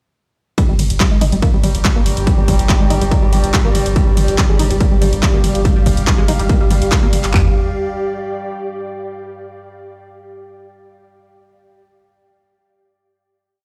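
Driving peak-time techno at 142 BPM in 4/4, industrial and relentless, played on a big sound system in a bare stone room whose reverb hangs around this short complete piece. From 0.6 seconds an up-front, overdriven techno drum kit pounds a four-on-the-floor kick with claps and floor tom, and a dry, punchy analog drum machine adds programmed hats, ride, claps and mid tom with sidechain pumping. Underneath sit a saturated sub bass rumbling between the kicks, a nasal, detuned sawtooth synth repeating a tight 16-step sequence with tape echo, and an eerie metallic FM drone. An ethereal, full-bodied pad of slowly shifting chords enters at 1.4 seconds and sustains through the final chord to 9.0 seconds.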